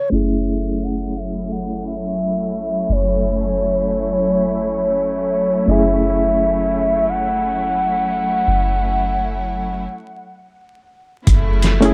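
A breathy, pure sine lead carries the melody from the start, its dark tone colored by chorus, tape echo and a gritty 12-bit sampler edge, singing in a high register until it drops out at 10.6 seconds. This smoky, hypnotic trip hop excerpt rests on a single F#m7 chord, with a reedy electric piano shimmering under fast tremolo and a lush bowed string section holding sustained chords while a filter sweeps across them. A soft, round 808-style bass sits up front on a deep low F#, its fast attack decaying into darkness. After a break that opens at 9.9 seconds, a compressed, pitched-down boom bap kit bursts in at 11.3 seconds with a thumpy kick, medium-tuned snare and hi-hat, the loudest element of the mix. The close, dry sound is dusted with vinyl crackle and a low-pass filter, and the swung sixteenth-note feel gives the passage a lazy, smoky sway.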